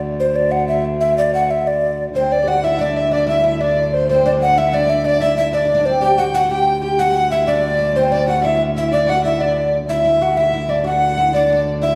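Medieval dance in a straight 6/8, festive and rustic, cut from a longer piece and set in a resonant recital hall with a 1.5-second reverb tail. A rich, reedy viola da gamba holds a low D drone throughout, while a breathy, mellow tenor recorder carries the melody up front from 0.2 s with a chiffy, crisp attack and hollow tone. A warm, earthy bowed fiddle joins at 2.1 s and a woody, plectrum-plucked fretless oud with double strings at 2.2 s, both adding second lines around the recorder's melody.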